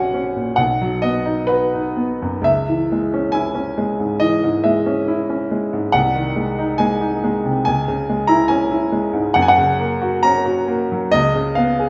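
A clear, smooth grand piano with a vintage, short-sustained tone sits up front in a reverberant stone room, playing a tender, nostalgic romantic nocturne in 4/4 with a freely rubato feel, its harmonies moving from F#7/A# through C#m and G#7/B# toward C#7 across a range from A#1 to A#5 in this brief fragment of a longer piece.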